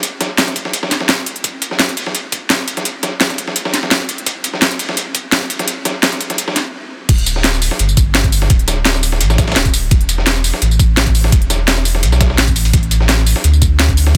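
A swung 170 BPM liquid drum and bass groove opens with an up-front electronic kit of cracking snare, crisp hats, tambourine and crash, layered with a gritty, overdriven sampler-style kit whose medium-tuned snare and hats sit further back, and a knocking electronic kick joins at 0.6 seconds. After a build-up and a brief stop at 6.7 seconds, the drop at 7.1 seconds brings in a deep, round sine sub bass spanning D1 to D2, sustained and mellow and up front in the mix. The mood is dreamy and soulful, with light reverb, a small-room character on the drums, and a dense, heavily limited modern master in this fragment of a longer piece.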